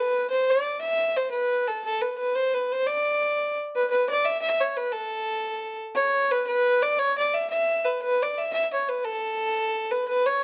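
A clear, earthy fiddle carries this short Celtic folk excerpt entirely on its own, a single bowed player set up front in the mix. The mood is wild and spirited, moving at 116 beats per minute counted in dotted quarters within a 6/8 metre with a straight feel. The fiddle stays in a compact range from A4 to E5, its tone marked by a light vibrato that colours the otherwise rustic sound. The opening section gives way to a new section at 3.9 seconds, which carries the tune through to the cut at 10.4 seconds. A moderate studio reverb gives the lone instrument a modest sense of space around it.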